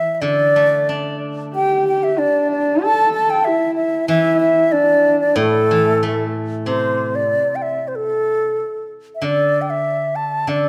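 Chinese traditional chamber music, graceful and tender, moves in a rubato 2/4 around 94 BPM in the A yu mode, tuned to A4 = 438 Hz, in a passage cut from a longer piece. An up-front, close-miked bamboo xiao carries the melody with an airy tone, gentle vibrato and soft attacks, over a steel-string zither whose fingerpicked accompaniment rings with a silvery shimmer. From 1.5 to 6.3 seconds a husky, woody horsehead fiddle adds a bowed second line with vibrato and portamento, and the ensemble sits in a moderate concert-hall reverb as a new section begins at 6.7 seconds.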